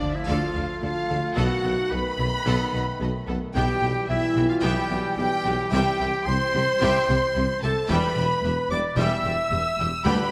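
Drenched in the reverb of a scoring stage, this short cinematic cue from a longer piece feels adventurous and determined, with a lush violin section carrying the melody over a second violin line, a clear solo oboe and a pure, distant flute section. A viola section with a smooth, even tone adds accompaniment while a dark, roomy French horn section and a mellow trombone section hold sustained chords, and a close-miked tuba, a very quiet cello section and a bowed double bass section with vibrato anchor the bass beneath a Dm, B7, Em/B, C, Em progression. Timpani struck with medium mallets on calf heads enter only at 10.1 s, just as the excerpt cuts off.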